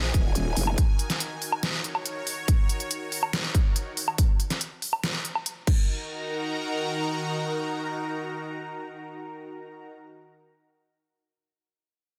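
Heavy wobble dubstep in a menacing, aggressive half-time feel, this fragment opens on a drop where a growling, detuned bass with chorus and overdrive snarls only until 0.8 seconds, while a punchy, tape-tinged electronic kick and a layered kit of deep snare, crisp hi-hats, crash cymbal and woodblock hit up front in studio reverb until 5.8 seconds, leaving a lush, bright supersaw pad of sustained chords, pumping with sidechain and swirling with phaser, to carry on alone to the end of a dense, heavily limited modern master.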